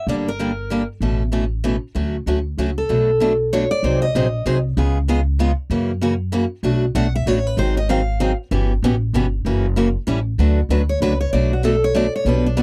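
A dry, close 1970s-style studio sound puts every instrument up front in this lively, playful waltz-time gypsy jazz fragment, swinging at 192 BPM and cut from a longer piece. A bright concert steel-string guitar plays the picked melody in short phrases, while a boxy parlour guitar picks accompaniment through chords such as Dmaj7, Bm7 and F#7, and a woody, thumpy gut-string upright bass plucks the low end. A steel-string guitar solo takes over at 10.4 seconds as the harmony moves to D6.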